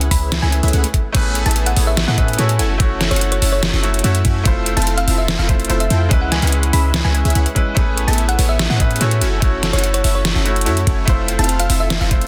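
Future bass at 145 BPM in a half-time feel, lush and playful, built on a knocking, up-front kick and a dubstep kit with deep snare, metallic hats and crash, a boomy sine 808-style bass and punchy detuned supersaw stabs that pump with the sidechain, while a round, tine-like FM pluck with chorus and dub echo sits in the background, an electronic swell appears at 0.5 seconds, and a bright, intimate grand piano with audible action noise enters at 1.1 seconds over chords moving from C#m7 through Amaj9 and F#m7 to Fmaj7, all in a dense, heavily limited, nearly dry mix cut from a longer piece.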